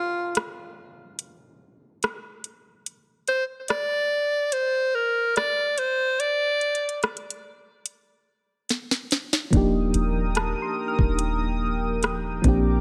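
Contemporary R&B with a smooth, romantic mood, where a breathy, whispered alto saxophone with digital delay carries the melody over a faint downlifter and a knocking, gritty electronic drum kit; after the saxophone drops out at 7 seconds, a drum fill at 8.7 seconds leads at 9.5 seconds into an Ebmaj7 bed of mellow, warbling FM electric piano with chorus and tremolo, a shimmering chorused pulse-width pad, a deep, round 808-style bass and a soft pluck tucked in the background, all in light digital ambience.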